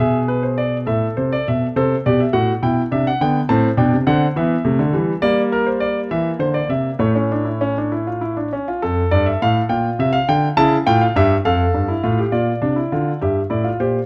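A solo concert grand piano, warm, intimate and up front with deep bass, smooth vintage tone and audible action noise, carries this joyful, stately baroque-style three-part fugue in 6/8 at 68 BPM, moving from A minor into D minor at 5.2 s, tuned to A4 = 444 Hz and heard through light reverb with close, detailed microphones in a short cut from a longer piece.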